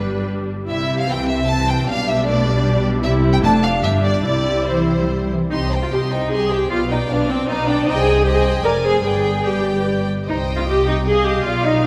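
A rich, even viola section sits up front in this spirited, graceful classical-period movement for string orchestra, carrying the bowed accompaniment with a smooth, vibrato-laden tone that still sounds slightly distant. Above it, a focused first violin section sings the melody while a second violin section with a smooth top and expressive vibrato traces a supporting line. The low end comes from a cello section in the background, its soft attack and portamento giving the bass an expressive glide, joined lower still by a soft-edged, distant double bass section. The music moves quickly in 3/4 at 140 to 157 BPM with a rubato feel, opening in C major before turning to C minor at 5.5 s for a darker second section. A wet scoring-stage reverb wraps the ensemble through to the close of this short passage cut from a longer piece at 11.9 s.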